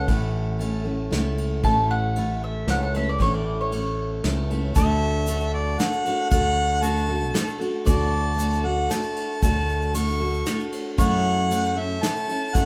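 A harmonica with light vibrato carries the melody from 4.8 seconds, sitting up front yet with a distant, roomy character and a classical poise. This gentle acoustic folk piece in waltz time, cut from a longer performance, opens with a woody, double-strung mandolin solo before the mandolin settles into a second line beneath the harmonica. A bright, full-bodied dreadnought guitar with fresh strings provides picked accompaniment, while a punchy fretless electric bass sits direct and forward in the mix. Soft brushes on a small-room kit cover kick, snare and ride, and a grainy, saturated tube shaker joins quietly in the background alongside the harmonica. The group sounds like it is playing live together in one studio room with moderate reverb, and the harmony arrives at an F#m7 chord at 11.0 seconds.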